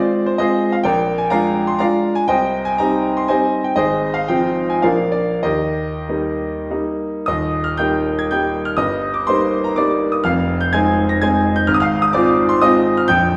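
A brilliant, vintage-toned grand piano carries this proud, graceful fragment of a romantic classical dance in 3/4 and E-flat major, its dotted rhythms moving with free rubato between 90 and 135 BPM over chords such as Fm/Ab, Bb7 and Cm, with the opening phrase returning at 7.3 seconds, heard from further back in a large, reverberant studio whose 1.4-second tail and softened top end lend a distant glow.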